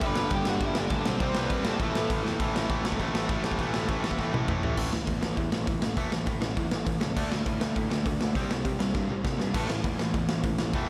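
A straight 4/4 pulse at 201 BPM drives this rowdy, upbeat punk rock fragment, cut from a longer piece, where a raw garage drum kit sits up front with a punchy kick, medium-tuned snare, crash, hi-hat and toms in a pumping stone room, gritty and saturated, with drum fills scattered throughout. A bright, distorted electric guitar pounds out the riff over chords moving from G through C5, A5 and D5, backed by a compressed, overdriven second guitar that drops out at 4.8 seconds and returns at 9.6, and a growly, fuzz-laden picked bass in the background. A warm, bluesy lead guitar with delay adds a brief melody for the opening 2.1 seconds, all under a light reverb.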